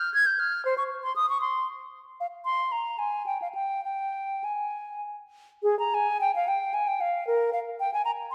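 A wet, spacious reverb surrounds this brief, grave fragment of a baroque-style fantasia for unaccompanied concert flute, cut from a longer piece and moving freely in rubato triple time. The flute sits up front with a pure, straight tone and crisp attacks, ranging from Ab4 up to Ab6. Its solemn opening phrase gives way to a new idea at 5.6 seconds before the fragment breaks off at 8.3 seconds.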